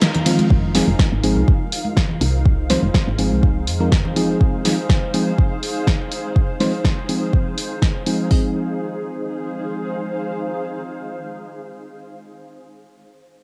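Deep and warm, this excerpt from a longer deep house piece moves at 123 BPM in 4/4 with a light 16th-note swing, set in F minor and cut from a longer piece. It opens on a brief break with a band accent at 0.0 seconds over an Ebsus2 chord, where a drum layer of hi-hat, ride cymbal and fat snare is already playing, then settles onto Fm7 at 0.5 seconds as a second layer with a deep kick and hi-hat arrives. Both drum layers are electronic and tape-colored, re-recorded in a small room and kept up front, while bright, high-tuned congas with a thin skin sit in the background until 4.1 seconds. A woody, round FM bass pumps under the sidechain between F1 and F2, stopping at 4.3 seconds. Mellow FM electric piano stabs, dark and full-bodied with chorus, tape echo and a faint noise layer, carry a filter sweep until 8.3 seconds, while a cloudy, detuned granular pad drifts above with its own reverb and sidechain pumping. 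The whole has the warm character of a home cassette recording, bathed in a moderate spring reverb.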